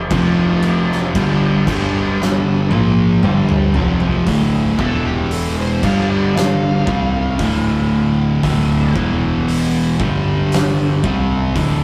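A straight, crawling 4/4 pulse at 58 BPM anchors this sludgy, ominous stoner and doom metal passage in D minor, cut from a longer piece. An oversized, low-tuned acoustic drum kit with a boomy kick, fat snare and dark cymbals pumps through a gritty room sound and rolls into a fill at 2.2 seconds, while a growly overdriven fingered bass and a double-tracked, biting overdriven guitar sit alongside a pair of thick, picked fuzz guitars grinding out the riff. From 4.8 to 8.9 seconds a compressed fuzz lead guitar with wah and delay threads a melody over the heavy chords, all captured as a rough rehearsal-room recording with tube saturation and a small-room ambience.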